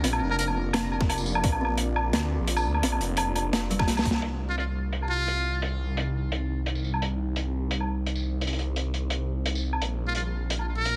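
A dark, tense half-time drum and bass piece opens at once on a deep, evolving ambient pad of sustained chords, pumping and grainy with vintage sampler grit. A soft, woody kalimba arpeggio rings in the background with tape echo, while a swirling, thick detuned saw bass with phaser and tube saturation sits up front. A crunchy breakbeat kit of hi-hat, medium-tuned snare, tambourine and woodblock has a gritty, rolled-off top, joined by a hard-clipped electronic kick. A buzzy, brilliant muted trumpet plays brief melodic phrases up front with light vibrato, scooped notes and tape echo. After the kalimba drops out, a drum fill and band accent lead at 4.2 seconds into a new section where the harmony moves from Bb to Cm and a filter sweeps across the drums. Heavy radio-style compression and a small room ambience give the whole piece a squashed, close feel.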